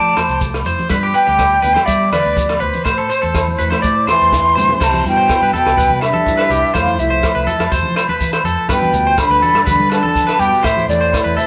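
Highlife guitar band music, danceable and carefree, moving in a straight four-beat feel and cut from a longer piece. Up front, a breathy concert flute carries the melody with a soft attack, vibrato and an unsteady tone, while a twangy electric guitar at the edge of break-up plays picked, scooped arpeggios bathed in spring reverb. Beneath them, a dark, clean second guitar fingers accompaniment through a phaser in the background, and a round, amped fingered bass anchors the low end. A compact cocktail kit with a high-tuned snare and punchy kick sits distant and roomy, joined by ringing agogo bells, bright low-tuned congas and a grainy, close shekere, all tucked into the background. At 4.1 seconds a raspy, growling trombone enters with scooped notes in a jazz style, a drum fill follows, and the harmony shifts from Fmaj7, G7 and Amadd9 to a new passage opening on Cmaj7 at 4.8 seconds, all heard as a band playing live in a stone room.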